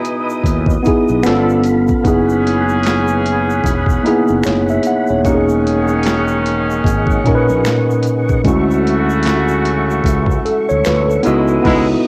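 Sultry and introspective, this short neo-soul R&B cut from a longer piece sways at 75 BPM with a swung 16th feel, its mellow tine electric piano sitting up front over chords moving from C#m9 through G9, F#9sus4, Emaj13 and Dmaj9. A gritty, pitched-down boom bap sampler-style kit with a thumpy kick, high-tuned snare, handclaps and overdrive pairs with a growly fretless bass that enters at 0.4 seconds, while a close, dry egg shaker and finger snaps sit faintly beneath. Tight vintage horn stabs with light vibrato and a clear tonewheel organ turning through a slow rotary speaker fill out the home cassette sound before a band accent lands at 11.6 seconds.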